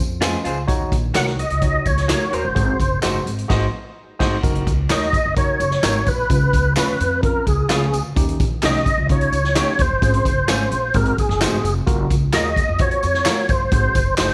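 A fat, lightly overdriven tonewheel organ carries the melody up front from 1.2 s, its chorus vibrato, key click and slow rotary speaker leading this joyful, danceable 1960s-style soul excerpt at 129 BPM in Db major, over a worn, slightly out-of-tune tine electric piano, a woody pizzicato upright bass, slightly broken-up, lo-fi guitar stabs through a small old amp, a roomy swinging big-band drum kit with dark cymbals and a boomy kick, and handclaps and tambourine in the background, with a band accent at 3.5 s and light small-room reverb.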